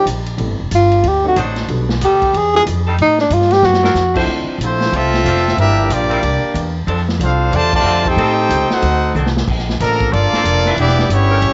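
A breathy, dark tenor saxophone opens this brassy, sultry big band swing excerpt, carrying the melody up front with scooped notes and light vibrato over a warm concert grand piano that sits in the background with audible action noise and long sustain. Upright bass and a vintage drum kit enter almost at once, the bass plucked and thumpy with a woody tone, the kit acoustic and natural in a small room with a punchy kick and a medium-tuned snare. A clear saxophone section soon adds soft-attack sustained chords, and after the solo ends at about 4.3 seconds the trumpet section takes over the melody, present and up front, while a bright trombone section plays a second line behind it. Rich extended harmonies move the tune into a minor key, with drum fills marking the turns and a band accent landing at 7.7 seconds. Light reverb and studio ambience surround the ensemble, and the home cassette recording gives the whole piece a dull, rolled-off top end.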